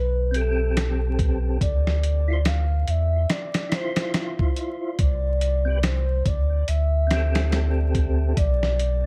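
A breathy, gliding sine lead with subtle chorus and tape echo opens this brooding, melancholic trip hop excerpt in A minor at 71 BPM, over a deep, round sub bass sitting up front. At 0.3 seconds a dusty, gritty sampler-style drum kit with a thumpy kick and compressed, tape-warmed tone enters together with a mellow, lightly overdriven tonewheel organ, its percussive attack colored by chorus vibrato, fast rotary speaker, tremolo and tape echo. The swung 16ths move through Am7, Dm7, Am7/C and Bm in a dark, dry production dusted with vinyl crackle.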